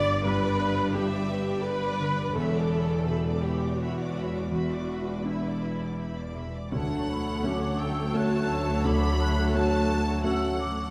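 Cinematic orchestral music in 3/4 at 84 BPM, this hopeful, moving excerpt breathes with an uneven, rubato pulse. A bright, focused violin section carries the melody with vibrato, shadowed by a second, more distant and intense violin line. Underneath, a grand piano with audible action noise sits in the background, a close viola section adds soft-attacked, expressive portamento, and a ringing, fingerpicked harp spins arpeggios, while cellos and a rich double bass section anchor the low end. At 6.7 s the harmony settles into D major on a Dmaj7 chord after moving from G to Em7, and an airy, hollow flute section enters with a second line, supported by sustained French horn chords and a brief, articulate hard-mallet timpani stroke that lasts until 7.8 s. The whole is bathed in a wet scoring-stage reverb, with a layer of vinyl crackle beneath.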